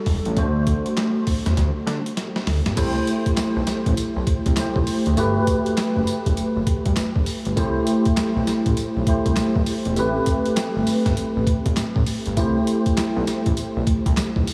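R&B in a new jack swing vein, this confident, bouncy fragment of a longer piece rides a swung 16th-note groove, with a bright, clean tine electric piano carrying the chords through an ensemble chorus, moving from D7 to C6, Gmaj9 and Am9. Beneath it, a fat, detuned sawtooth analog bass holds thick sustained notes with a filter sweep, while a gritty, pitched-down, sampler-style boom bap drum kit sits up front with a thumpy kick, medium-tuned snare, hi-hat, handclaps, tambourine and crash cymbal. A drum fill at 1.6 to 2.8 seconds leads into the second section, and the whole mix is soaked in a huge, dreamy ambient reverb.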